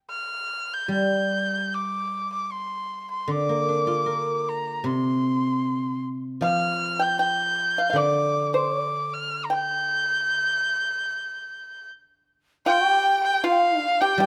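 Graceful and tender, this short cut from a longer piece of Chinese traditional chamber music moves at 77 BPM in 4/4 with a loose, rubato feel in G yu mode. A single bowed erhu, placed up front, carries the melody from the very start, its earthy, biting tone softened by a smooth top, light vibrato and gliding portamento. Just after, at 0.9 seconds, the guzheng enters with silvery, ringing accompaniment plucked with fingerpicks, also sitting close to the ear. The pipa joins at 6.4 seconds with a dry, percussive second line, and near the end, at 12.7 seconds, a large bamboo dizi adds a very quiet, breathy second line with a buzzing membrane, soft attack, vibrato and an unsteady, warm tone. Close, detailed microphones and light reverb keep the small ensemble intimate and clear.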